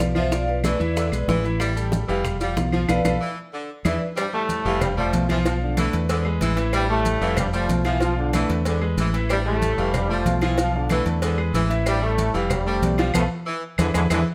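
Danceable and driving, this salsa cut at 187 BPM opens with a ringing vibraphone melody that gives way at 4.2 seconds to a punchy trombone section, carried by brilliant grand piano accompaniment, a round, up-front fingered electric bass, a clear saxophone section on the second line, and background percussion of thin-skinned congas, tight bongos and cowbell, woody claves and grainy maracas, with drum fills and band accents from 2.9 seconds and again near the end, set in a moderate large-studio reverb.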